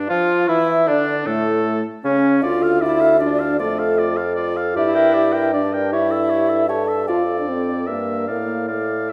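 In a brisk, straight three-beat metre, this short cut from a quick classical-period wind quintet movement drives forward with an urgent, stormy mood. The flute carries the melody with a hollow, wooden, airy tone, touched with vibrato and tongued notes; it is close-miked yet sits in the background. A clear oboe with light vibrato traces a second line, while a distant, roomy French horn, the loudest voice in the group, fills out the accompaniment. The bassoon holds the bass up front with a mellow, smooth-topped sound, and a warm clarinet joins the accompaniment from 0.1 s, tucked quietly behind the others. The harmony moves restlessly through minor and dominant-seventh chords, tightening with a diminished chord at 7.9 s before settling at 8.3 s, all within the generous glow of a wet recital hall.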